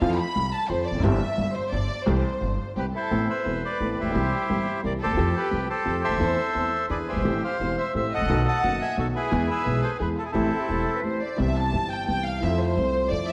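Set in a moderate scoring-stage reverb, this excerpt from a longer tango moves at 174 BPM in a rubato 3/4, tense and melancholic as it turns from C major to A minor at 3.1 seconds. A dark, close violin section plays a bowed second line with vibrato, while a woody upright piano carries the accompaniment and a thumpy pizzicato upright bass anchors the low end. An up-front, reedy bandoneon takes the smooth melody from 2.8 to 11.0 seconds, a pure, tongued flute adds a brief straight-tone line around 10.5 seconds, and a short break follows before the opening material returns.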